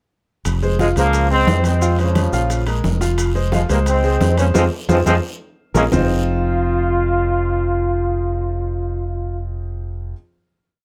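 A brilliant, up-front trombone section with vibrato and a soft attack carries a motif-based melody partly doubled in thirds over a fiery, passionate F minor salsa montuno at 175 BPM. It is driven by a dark, round fingered electric bass playing a tumbao that anticipates the chords and a clear grand piano montuno in octaves with audible action noise. Background congas, quiet bongos, ringing timbales, raspy guiro and grainy maracas drop out after a band accent and drum fill that end at 5.9 seconds, when the band lands on a closing Fm7 chord held until 8.7 seconds, all in light reverb.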